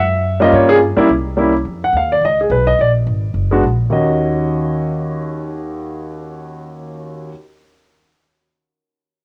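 Smoky and late-night, this brisk jazz piano trio fragment swings lightly at 212 BPM in Eb minor. An intimate grand piano carries the melody up front, its long sustain, audible action noise and cassette-tape colour sitting over a woody pizzicato upright bass on steel strings. The harmony moves from a rootless Ebm7 through Gm7b5 and C7b9 to Badd9 at 1.6 seconds and a Bb7 with a sharp fifth at 2.8 seconds, returning to Ebm7 at 3.9 seconds, all heard in a snug booth ambience on a homemade cassette recording.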